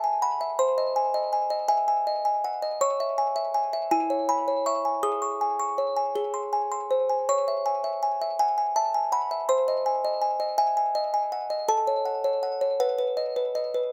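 Close and dry, this fragment of a classical lullaby puts a lone music box up front, its tinkling, slightly out-of-tune plucks sounding small and delicate with a touch of slapback echo. In a slow 6/8 at 54 BPM, the eerie, wistful melody moves between E4 and D#6 over shadowy harmony that starts on C#m and closes on a B chord at 12.8 seconds.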